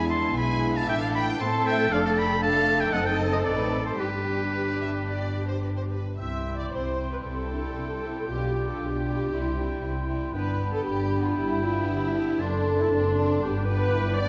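Quick, graceful and lively classical-period orchestral music at 116 BPM in C major, with a rubato feel: veiled, muted violins carry the melody in the background while a bright, present oboe and a second muted violin line sing alongside muted violas, mellow French horn chords, lush cellos and up-front double basses, until a dark clarinet and a pure, hollow flute group join at 6.2 seconds, all bathed in concert hall reverb.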